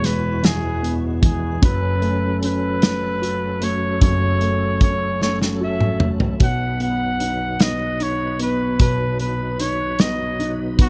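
A six-eight pop ballad with a swaying, romantic mood, moving at 50 BPM in dotted quarters, this excerpt is cut from a longer piece. A clear, vintage-toned flugelhorn carries the solo melody up front, singing with vibrato between F#4 and F#5 through a digital delay. Beneath it, a warm grand piano supplies the accompaniment from deep bass notes upward. A tonewheel organ holds full, lightly overdriven chords with chorus vibrato, audible key click and a slow rotary speaker. A loose, acoustic indie drum kit sits prominently in a small room, with a tight kick, a medium-tuned snare, hi-hat and toms, and a drum fill runs from 5.2 to 6.4 seconds. The harmony moves from Eadd9 to F#m at 1.6 seconds and arrives on B at 6.4 seconds, all set in a studio reverb.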